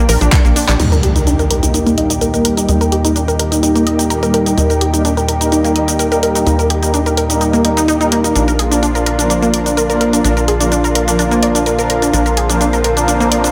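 Expansive and hopeful, this progressive house excerpt moves at 127 BPM in Eb major, with a lush, detuned unison pad holding chorused chords and a bright, punchy unison pluck spinning arpeggios through cassette-tape grit and tape echo, both breathing with sidechain pumping. A tight, driving sequencer bass and a layered deep house kit of hi-hat, shaker, handclaps and crash enter at 0.1 seconds, and a drum fill leads into an impact at 0.8 seconds, where a smooth, phased supersaw adds soft stabs through a low-pass filter. Filter sweeps run across the pluck, supersaw and pad from there on, with the chords moving from Bb to Eb and back to Bb at 8.4 seconds, all set in a reverberant recital-hall ambience.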